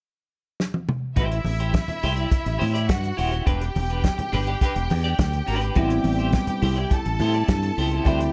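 A straight 4/4 disco groove at 104 BPM in A dorian opens with a drum fill from 0.6 seconds on a tight, up-front soul kit with a medium-tuned snare and pumping room, before growly fingered bass, very quiet damped congas, a twangy clean guitar with tremolo and a lush, distant violin section all enter at 1.2 seconds over Am7 and Em7. The mood is danceable and driving, and at 5.8 seconds a barky, gritty tine electric piano with phaser joins through a combo amp, all set in a dark studio reverb in this short excerpt.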